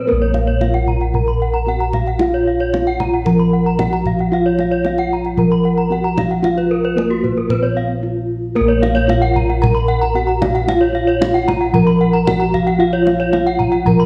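A straight 4/4 pulse at 113 BPM carries this shimmering, hypnotic cut from a longer Balinese gamelan piece in Bb pelog, where a mellow, padded-mallet bronze metallophone sings the melody over round, up-front bossed gongs in the bass, two bright, horn-struck metallophones with paired tuning spin beating arpeggios above (one trailed by a slapback echo), and a tight kendang enters at 0.3 seconds, with a brief break at 7.8 seconds, all set in a moderate recital hall reverb and coloured by the warbling pitch drift of worn cassette tape.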